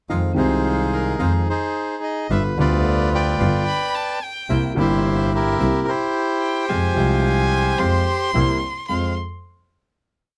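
A passionate, sultry tango in F minor, this short whole piece moves at 109 BPM in 4/4 with a rubato feel, tuned to A4 = 442 Hz. A warm, intimate concert grand piano with deep bass and audible action noise carries the accompaniment in a sincopa rhythm, joined by a bowed double bass, earthy yet distant, with light vibrato, and by a second bandoneon sitting in the background with reedy sincopa stabs. Up front, a bright, dry, close-miked bandoneon sings a motif-based melody built from sentence phrases from 0.4 seconds. At 3.7 seconds a rich, boxy violin enters high above, adding expressive bowed answering phrases with vibrato and portamento in the melody's rests. The harmony moves from Fm7 through G7 and C7 back to F minor, and the piece closes on a final F minor chord at 8.9 seconds. The sound is close and detailed, captured with close microphones and little reverb.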